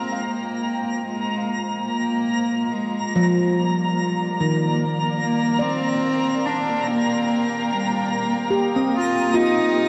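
Drenched in a huge, wet reverb with a very long tail, this peaceful, weightless ambient excerpt moves at 72 BPM in a straight 4/4, tuned to A4 = 443 Hz, and drifts from Bb7sus4 to Ebmaj7 before returning to Bb7sus4 at 8.5 seconds. A dark, nasal, reedy solo cello with a gut-string, period-style tone carries the bowed melody up front, fading in alongside a cloudy, blurred, detuned granular pad that holds mellow sustained chords. A ringing, bright handpan plays meditative arpeggios, while a twinkling, sparkling granular texture hovers high above, with shimmer reverb on every part and delay on the cello and handpan.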